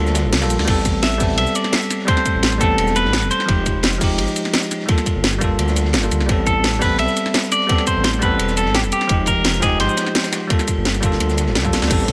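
Liquid drum and bass at 171 BPM with a melancholic, dreamy feel, this excerpt from a longer piece opens on a drop where a bell-like tine electric piano and a deep, rumbling detuned saw bass carry chords moving through Gm9, Am9 and Fm9, while an up-front garage kit with a cracking snare and bright hats is layered over a gritty, saturated breakbeat kit sitting in the background. A tight electronic kick drops out briefly before returning at 0.7 seconds, and a clean, picked semi-hollow electric guitar with delay plays melody phrases from 1.0 to 4.0 seconds and again from 6.5 to 10.5 seconds. Light small-room reverb surrounds the mix, and a drum fill at 11.6 seconds leads into a band accent.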